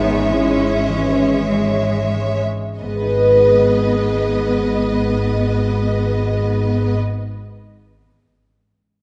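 A slow, rubato orchestral movement in the romantic classical style opens with the full ensemble sounding at once. A violin section carries a yearning melody, heard close, with expressive vibrato and portamento, while a mellow solo clarinet and a second, more distant violin section shape a line beneath it. A clear, focused viola section supplies the accompaniment, a rich cello section adds lush bass in the background, and the double basses sit up front at the bottom of the texture. A ringing, thumb-plucked concert harp plays arpeggios from farther back, yet it is the loudest part and sounds until 7.2 s. The opening phrase slows down across its first 2.8 seconds before the harmony shifts at 2.8 s, keeping a solemn mood. A moderate scoring-stage reverb gives the ensemble a spacious bloom, and a softened top end leaves this short fragment sounding smooth and rounded.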